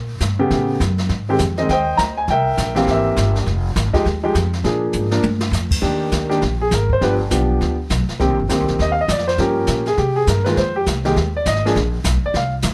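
Playful and relaxed, this jazz piano trio swings briskly at 203 BPM in Eb major, cut from a longer piece. A woody, growly pizzicato upright bass sits up front beside a natural-sounding brushed drum kit with dark cymbals and a boomy kick, which plays a fill at 4.9 seconds before the smooth, vintage-toned grand piano, deep in the low end and bathed in plate reverb, takes a solo from 5.8 seconds. The mix carries light reverb and some lossy compression artefacts.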